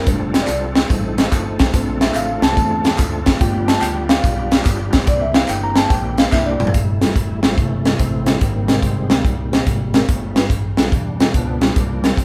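Up front, a crisp fusion drum kit with a high-tuned snare and punchy, saturated kick drives this soulful, uplifting uptempo gospel cut at 144 BPM in F major, swinging in 4/4 as a band plays live in one room with moderate large studio reverb. A mellow tine electric piano takes the first solo before a drum fill at 6.3 seconds hands off to the reedy tonewheel organ, lightly overdriven with key click, chorus vibrato and a slow rotary speaker, which solos from 6.7 seconds over rich chords like Bbmaj9 and Abmaj9. Beneath them sits a fingered electric bass in the background, while a vintage, band-limited tambourine, shaker and group handclaps add lift until 6.7 seconds.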